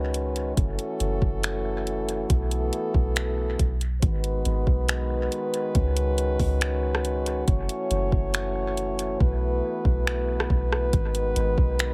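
A mellow French horn section holds smooth-topped sustained chords with a sidechain pumping effect over a deep, round 808-style bass, joined at 0.1 seconds by a smooth R&B kit of finger snaps, warm hi-hats, soft kick and rim click, in this melancholic, hazy cloud-rap excerpt at 139 BPM in a half-time feel in F# dorian, its dry but echo-heavy mix cycling through F#m7, B7sus4, G#m7 and C#9sus4 as the hi-hats drop out from 9.2 to 10.9 seconds before the cut.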